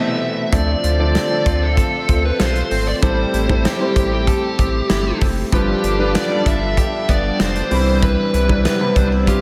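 1980s-style pop at 96 BPM in a straight 4/4, this nostalgic, moody clip opens with a brief band accent before settling into a dreamy mix soaked in lush hall reverb. A dark, fuzz-distorted lead guitar sits up front carrying the melody with delay, while a clear, polished baby grand piano supplies accompaniment and a shimmering, vintage string machine of violins holds sustained chords in the background under an ensemble chorus. From 0.5 seconds a rubbery, hollow square bass with a bouncy filter pluck anchors the low end, joined by a twangy, direct-recorded clean electric guitar riff with subtle chorus and delay tucked behind the other parts. An acoustic studio drum kit with a tight kick, medium-tuned snare and hi-hat drives the groove from the same point. The harmony moves from Amadd9 through Dm7, Am7 and G7 to Cmaj7 in this excerpt cut from a longer piece.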